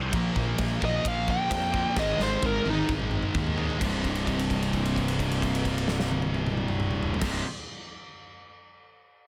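Heavy metal in a relentless, aggressive vein, this short cut from a longer piece sets a growly fuzz-driven fingered bass beneath a bright, scooped high-gain guitar up front and a sludgy, dark overdriven guitar in the background, over a big acoustic rock kit with punchy kick and bright cymbals, while a smooth, shadowy overdriven lead guitar solos early on, a drum fill arrives at 2.0 seconds, and a held note rings from 3.8 seconds in light reverb.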